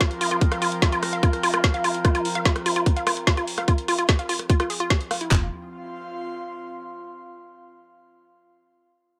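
A light reverb and digital ambience frame this short, alien and driving excerpt of psychedelic trance at 147 BPM in straight 4/4, sitting on an F5 chord. Up front, a woody, wave-folded pluck plays a mellow, percussive riff with chorus, dub echo and sidechain pumping, over a resonant sawtooth drone whose overtones move through sustained chords with a slow attack, chorus and built-in reverb. Two layered electronic drum kits push the groove: a garage kit of overdriven handclaps, toms and a tight kick, and a drum and bass kit with a woody snare, metallic hats and rim clicks, re-recorded in a small room. An airy, breathy, detuned pad with a noise layer adds bright, soft texture under chorus and sidechain pumping, and it rings on alone to 6.9 seconds. The synth pad fades out across the opening 5.3 seconds, and at 5.3 seconds a punchy, tight sequencer bass briefly sounds a low F1 with a fast, decaying filter pluck.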